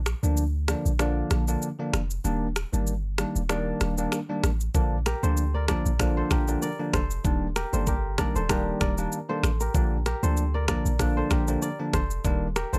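Afrobeats with a breezy, joyful lilt and a gentle swing, cut from a longer piece where a boomy, sine-like 808-style bass and a tape-warm afro-pop drum kit of knocking kick, finger snaps, rim click and shaker sit up front beside a bell-like, barky tine electric piano dressed in lush chorus. The opening break rocks between Bb and Ebmaj7. At 5.1 seconds a mellow, fingerpicked kora enters with a crisp, ringing riff carrying a slapback echo, all set in light reverb.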